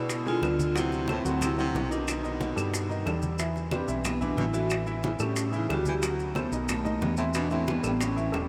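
A lively, sophisticated slice of Afro-Cuban jazz opens at once on a bright, ringing vibraphone melody struck with medium hard mallets and shimmering with fast motor vibrato and a delay. Beneath it, a breathy baritone saxophone traces a whispered, intimate second line in the background, with soft attacks, scooped notes and its own delay, while a concert grand piano supplies warm accompaniment with deep bass and audible action noise. A dark, punchy hollow-body short-scale electric bass sits up front with a round, amped tone. At 0.1 seconds, very quiet compressed, saturated congas and hard-handed bongos in the background join alongside grainy, mellow maracas, and woody, vintage-sounding claves follow at 0.4 seconds. At a brisk 182 BPM in a straight 4/4 in D mixolydian, the harmony moves through colorful chords such as G#dim7, D13 and Baug7 before settling on Em, and the whole mix is soaked in a huge, dreamy ambient reverb.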